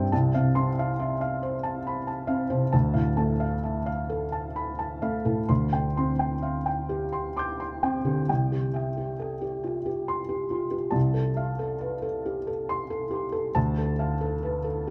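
A felt-muted upright piano plays alone from the first moment, its soft, thick-felt tone sitting up front with a tape echo, in an intimate, hopeful neoclassical minimalist piece in C major and 6/8 at a slow, rubato 42-46 BPM. Over about 15 seconds it moves through F/C, Dm and Gsus4/D, then settles on C at 8.3 s before returning to F/C and Dm. Close, detailed microphones and a moderate studio reverb keep the sound mellow and near in this passage cut from a longer work.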